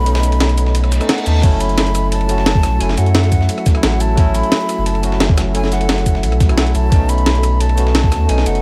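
A breathy, hollow jazz flute with vibrato carries the dreamy melody in this lush excerpt of liquid drum and bass at 175 BPM in F# dorian, drifting through dub echo alongside a bell-like, bright electric piano, over an ethereal, airy pad of detuned, chorused chords in the background and a deep, round sine sub bass sitting up front, while a gritty, tape-warm, pitched-up breakbeat kit with a high-tuned snare and a softer filtered soul kit with ride cymbal and analog delay drive the groove, a reverse cymbal sounds from 0.9 seconds, and a compressed, thumpy electronic kick lands at 1.4 seconds as the chords move from B9 to F#m7.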